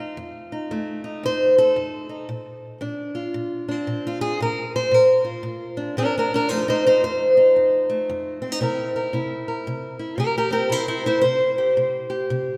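Rollicking and gritty, this short excerpt of acoustic country blues in F mixolydian swings along at 114 BPM in 4/4, with a lone fingerpicked parlour steel-string acoustic guitar, boxy and up front with audible finger squeak, moving through F7, Bb and C7 over a range from F2 to C5 and blooming into a wet church reverb that rings on for 2.7 seconds.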